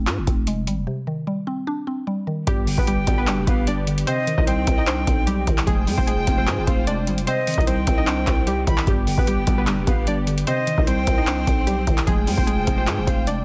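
Dense and heavily limited, this trap-style hip hop excerpt sits in a digital ambience, moving at 150 BPM with a half-time feel in C harmonic minor, its mood melancholic and menacing. It opens with a short break in which a woody, round FM mallet-like pluck with chorus provides accompaniment in the background, over a growling, buzzy 808-style bass and a booming analog drum machine whose deep kick, metallic hi-hats and handclaps sit up front with tape-warm, vintage 12-bit sampler grit. At 2.5 seconds the main section arrives: a glassy, crystalline wavetable pluck carries the melody with chorus and digital delay, while a lush symphonic string section holds bowed chords with vibrato in the background. A silver concert flute, airy with a soft attack, adds a high second line through digital delay. A retro, glossy chorused polysynth punctuates the progression with brief dark stabs, first at 3.1 seconds and then roughly every three seconds, as the harmony cycles through Fmadd9, Cmadd9 and G.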